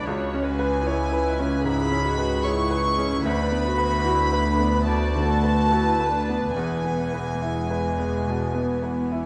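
The rhythm moves freely in a rubato 4/4 around 69-76 BPM, giving this cinematic, emotional film-score excerpt in B dorian a longing, moving quality. A warm symphonic violin section carries the melody up front, bowed sul tasto with a soft attack and a pure, floating tone high in its range. A bright grand piano with brilliant, short-sustained notes supplies the accompaniment alongside an intimate chamber viola section played with vibrato. Beneath them, a dark double bass section and a rich cello section, the latter sitting in the background, hold the low end with soft, bowed sul tasto lines. The harmony moves from C#m7 to Bm/D at 3.3 seconds and arrives on E at 6.6 seconds, all heard in the moderate reverb of a scoring stage.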